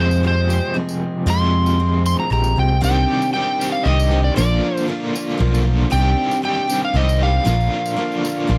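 Folk rock and heartland rock in a reflective, dusty 3/4, this excerpt opens with a dark, overdriven slide guitar solo up front for its first 2.8 seconds, carrying the melody over woody, old-stringed picked steel-string acoustic guitar, a crunchy double-tracked guitar riff with tremolo, an amped picked electric bass and a jingly tambourine, all in a dry, close 1970s-style studio sound.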